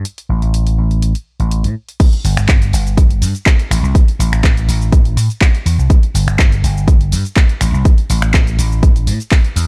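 This dark, dry recording has little reverb, and it is a short cut from a longer piece of filtered disco house at 123 BPM in a straight 4/4 with a sensual, funky mood. A vintage electric slap bass, amped and up front, opens the piece under a low-pass filter sweep, moving between G1 and A2 with sidechain pumping. An overdriven analog drum machine joins almost at once, its crash cymbal, finger snaps, handclaps, hi-hat and shaker sitting lower in the mix, with pumping on the hats, cymbals and percussion. At 2.0 seconds the drop arrives with a punchy, layered electronic kick, tape-toned and re-recorded in a large room, placed up front as the loudest part. Bass and drum machine carry on to the close at 9.7 seconds, and the kick stops just before them at 9.4 seconds.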